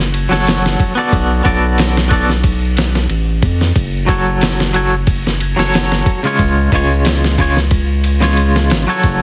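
A twangy, bright electric guitar with tremolo and tape echo enters at 0.3 s over a round, deep analog bass and a gritty, sampler-style soul drum kit with thumpy kick, fat snare and ride in a touch of studio ambience, giving this short, melancholic and cinematic trip hop fragment at 91 BPM in F# harmonic minor a dry, heavily compressed radio sound as it moves through F#m, Bm7 and C#.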